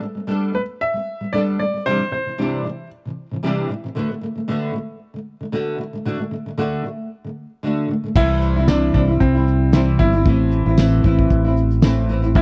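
An easy-going, heartfelt acoustic pop passage, cut from a longer piece, moves at 114 BPM in 4/4 with a light sixteenth-note swing. A double-tracked nylon-string guitar carries the accompaniment from the start, fingerpicked and up front, with audible finger squeak over chords such as Gadd9, Cadd9 and Bm7/D. A bright upright piano takes the melody briefly early on, its woody, polished tone revealing action noise and a short sustain, before returning at 8.2 seconds. At that point a fingered electric bass, round and dark, and a cloth-damped drum kit arrive together, the kit thuddy and muffled with a fat snare, tight kick, shaker, crash and a gritty, saturated edge. A jingly tambourine sits far back in the mix from 8.7 seconds while the harmony moves between C and Amadd9. The whole has the dry, close feel of a small 1970s-style studio room.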